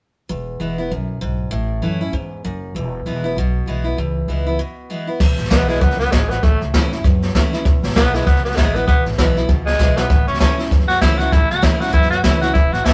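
Rockabilly with a rollicking, rowdy swing at 196 BPM in E major, opening on bright picked acoustic guitar and woody, thumpy upright bass, then after a short break a brushed drum kit with dark cymbals and a boomy kick arrives at 5.2 seconds, joined by a raspy, breathy tenor saxophone carrying the melody up front, all caught in a rough rehearsal-room recording with light reverb.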